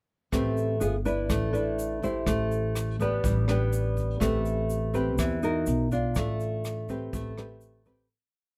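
Smooth and wistful, this short bossa nova piece moves at 124 BPM in 4/4 with a straight feel, set in A minor and tuned slightly low to A4 = 438 Hz. Up front, a dark, woody nylon-string guitar with old strings carries the harmony in a thumb-plucked classical style, pairing thumb bass with syncopated plucked chords through Am9, G7b9, Am11, G/A and a turn to Bmaj7 before settling back on Am9. An upright bass, also up front, plays pizzicato on steel strings with a warm, woody tone, keeping a two-feel of roots and fifths in its low register. A jazz brush drum kit, airy and polished in a small room with a boomy kick, lays down a soft bossa groove from hi-hat, kick and rim click, while a grainy, bright egg shaker sits close and dry in the background. The whole piece is a single section with little reverb, fading out from 6.2 to 8.1 seconds.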